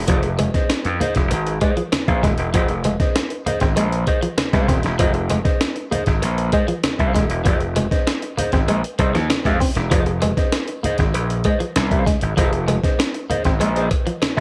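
A lightly reverberant mix carries this sly, cool funk excerpt, built on an up-front, compressed, sampler-style breakbeat kit with a thumpy kick and high-tuned snare alongside an up-front, overdriven, punchy slap bass that starts at 0.0 seconds. A bright, twangy picked electric guitar plays the riff in the middle register while a dark, fingered clean guitar adds higher accompaniment over a steady Fm7. Very quiet close-miked congas and a metallic cowbell sitting in the background fill out the groove.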